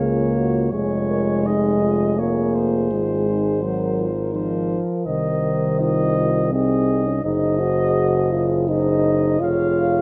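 Classical brass band music in a warm, hymn-like and lyrical vein, this excerpt moves in a rubato 3/4 at 83 BPM, tuned to A4 = 439 Hz, with harmony shifting between Db and Ab chords, including an Ab7 over Gb. A flugelhorn with vibrato carries the melody from a distant, roomy place, while a mellow, tight French horn section adds a smooth second line and two euphoniums accompany, one mellow and smooth-topped, the other vintage-toned and set in the background. Beneath them a tuba with light vibrato holds the bass up front, with every part sounding throughout in light reverb and close, detailed microphones.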